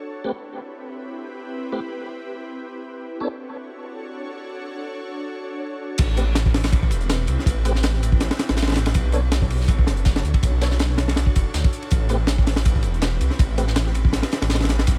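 An ethereal, airy pad of slow-blooming detuned chords opens this nostalgic, atmospheric drum and bass and jungle excerpt, joined at 0.2 seconds by round, mellow tonewheel organ stabs with key click, chorus vibrato, fast rotary speaker, 12-bit sampler grit and dub echo, before the drop at 6.0 seconds brings in a thick, beating, menacing detuned saw bass up front and a crunchy, saturated acoustic breakbeat kit with punchy kick, high-tuned snare and dark cymbals, layered with a quieter, high-passed hi-hat and snare kit, all over a small-room reverb.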